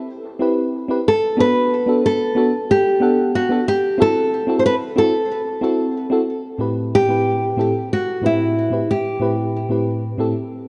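A dark, fingerpicked nylon-string guitar carries the melody from 1.1 seconds with a touch of delay, over a round, warbling vintage FM electric piano that enters at 0.4 seconds with chorus and tape echo, both set up front in a lush hall reverb in this wistful, smooth chillout piece cut from a longer work.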